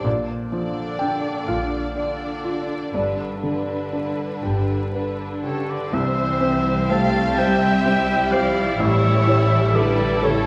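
Through a wet scoring-stage reverb laced with vinyl crackle, studio ambience and a faint mains hum, this moving, hopeful cinematic film-score passage drifts in a rubato 6/8 at 42 BPM. A warm violin section sings the melody with vibrato over a distant second violin line, lush violas, background cellos and soft-attacked double basses, while an intimate felt-muted upright piano sits up front with audible action noise. A distant, roomy solo oboe joins at 5.4 s, just before the harmony settles into C major at 5.9 s.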